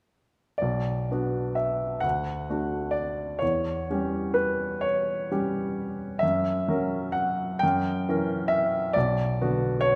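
A solo baby grand piano, warm and natural with short sustain and an up-front presence, enters at 0.6 s in this mournful, melancholic romantic nocturne in B minor, moving at a slow 43 BPM in a rubato 6/8 through B minor, D, C#dim/E, F# and F#7b9 before settling back on B minor at 9.0 s, spanning B1 to G5 inside a wet recital-hall reverb in this brief fragment cut from a longer piece.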